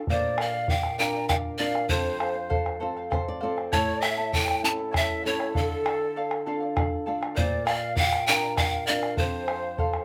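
A breathy, up-front bamboo pan flute carries the wistful, melancholic melody in this Andean folk excerpt at 66 BPM in a straight 6/8, with a distant, airy quena adding a second line through tape echo, a shimmering fingerpicked charango and a flamenco guitar with audible finger squeak providing accompaniment and a nylon-string fill at 2.8 seconds, and a round, vintage-toned bombo underneath, all set in a small room over chords moving from Bb and F to A and Dm.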